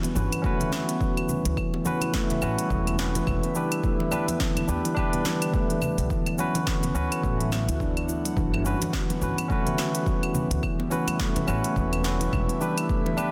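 Dense and heavily limited, with a moderate concert-hall reverb, this hypnotic organic downtempo excerpt at 106 BPM with a swung sixteenth feel pairs ringing stainless-steel handpan arpeggios through digital delay with a bright, barky tine electric piano that pumps to the sidechain and echoes through its own delay, over a very quiet breathy, detuned pad of sustained chords, a woody, thumpy pizzicato upright bass on gut strings from 0.2 s to 12.4 s, a punchy layered electronic kick from 0.4 s, an afro-pop kit of sharp snare, smooth hi-hat, cabasa and claves in studio reverb, and close, dry congas in the background, all cycling through Gmaj7, A7, Em7 and D.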